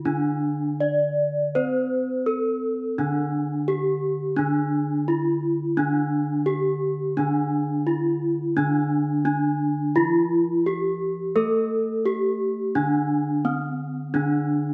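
Two bronze gamelan-type metallophones sound together from the very start of this serene, ceremonial excerpt in D slendro, moving at 86 BPM in a straight 4/4. The melody metallophone carries the tune from just below C4 up to D5, its wooden mallet drawing a ringing tone from paired tuning that produces shimmering beats, and it sits mid-forward and up front. Beneath it, a second metallophone plays the accompaniment between D3 and just under C4, struck with a horn mallet for a bright, full, close-miked sound that stays dry and present while sitting lower in level than the melody. Both instruments play throughout the 14.7 seconds, and after a short opening passage the music moves into a new section at 3.0 seconds. The ensemble performs live in one stone room whose reverb gives the bronze a lingering, ceremonial resonance.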